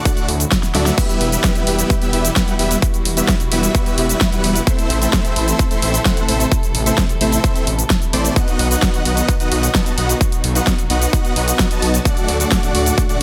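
Anthemic and powerful, this festival progressive house excerpt drives at 130 BPM in a straight 4/4, centred on E minor with chords moving from D to Em, Am and B before returning to D at 12.1 s. A huge, thick supersaw riff sits up front, its detuned unison sawtooth layers compressed with vibrato, a sub octave and digital delay, pumping with sidechain compression. Beneath it, a lush detuned saw bass with chorus holds down the low end from E1 to D2, mellow yet full, also breathing with sidechain pumping. The punchy, overdriven electronic kick sits up front alongside a big-room kit of crash, hi-hat, shaker and a huge snare, with a brief drum fill between 0.6 and 1.0 s. A dark chamber string section plays sustained, softly bowed chords in the background, adding an intimate sul tasto shading under the light reverb and a faint mains hum.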